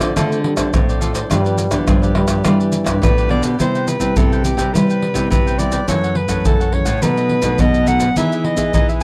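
This dry, close recording has the feel of a 1970s studio, touched with light reverb, and captures a sunny, festive samba-choro fragment cut from a longer piece, moving at 105 BPM in a straight 4/4 in C major. Up front, a percussion section of deep surdo, pandeiro, tamborim and maracas is struck with hard hands, its sound compressed and saturated. Beneath it, one nylon-string guitar plays a bright, fingerpicked classical accompaniment on fresh strings, while a second nylon-string guitar handles the bass in the background, thumb-plucked with an audible finger squeak, and a crisp, picked cavaquinho fills in from further back. A breathy, whispered trombone opens with an intimate, mellow second line over Dm7 and G7, its soft attack and light vibrato in a jazz style, and falls away at 3.6 seconds. The warm soprano saxophone takes the melody from 3.0 seconds, a smooth-topped jazz solo with vibrato that carries the new section through Cmaj7, F#m7, B7 and Emaj7.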